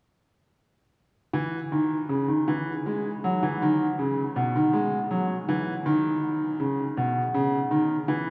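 Lively and elegant, this short cut from a longer baroque-style two-part invention for solo grand piano moves at 53 BPM in dotted quarters in a straight 12/8 in E major, tuned to A4 = 438 Hz, with a clear, smooth, vintage-toned concert grand with deep bass playing up front from 1.3 to 8.3 seconds in a range between B2 and G#3, all bathed in a wet cathedral reverb with a 6.2-second decay that places it in a vast, echoing space.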